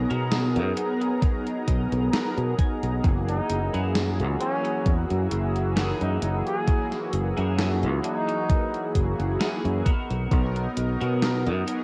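A slow, lightly swung 66 BPM groove in 4/4 opens this short, nostalgic vaporwave cut in B major, with a thumpy electronic kick up front from 1.2 s alongside a gated 80s drum machine's hi-hat and gated-reverb snare, all tape-warmed, while a growly fingered bass anchors the harmony moving from Bmaj7 to F#9 and back. Dark, brassy, detuned synth brass with analog chorus and tape echo carries the accompaniment over a warbling lo-fi pad in the background, a bright, compressed twelve-string electric guitar riff, and a brief clean electric guitar fill. At 3.3 s a distant, roomy flugelhorn enters with a jazz-style, vibrato-laden solo melody, and the woozy whole sits in light digital ambience with a home-cassette haze.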